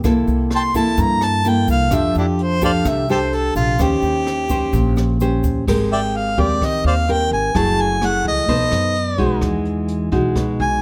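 This bossa nova excerpt from a longer piece moves at a sunny, breezy 128 BPM in a straight 4/4, with a jazz-style harmonica solo carrying the melody from 0.6 seconds, played up front with light vibrato, tongue slaps and scooped notes, and set in a plate reverb. A fingerpicked nylon-string guitar, also up front, supplies the classical-toned accompaniment through chords such as C6, F69, Abmaj9 and Emaj9. Beneath it, a pizzicato upright bass on steel strings gives a woody, warm low end. A jazz brush drum kit, recorded naturally in a small room, adds dark cymbals, hi-hat, rim clicks and a boomy kick. A grainy, bright egg shaker sits close but in the background until it drops out at 5.7 seconds, where the passage repeats its opening phrase under light reverb.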